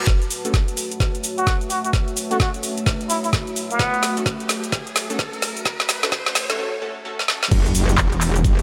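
Swung 16ths at 129 BPM in 4/4 drive this swaggering, aggressive bass house build-up in F# minor, where a knocking electronic kick and a garage kit of woody snare, metallic hats, cabasa, handclaps, ride and crash sit up front beneath a deep, moody ambient pad with vintage sampler grit, a soft, breathy airy pad, a reverse cymbal, riser and sub drop in the background, and bold, punchy orchestra-hit-like synth stabs with tape echo, while a plunger-muted trumpet plays a wah-wah, jazz-style solo with scooped notes from 1.4 s, before a break at 6.6 s gives way to a distorted, wobbling FM bass at the drop at 7.5 s.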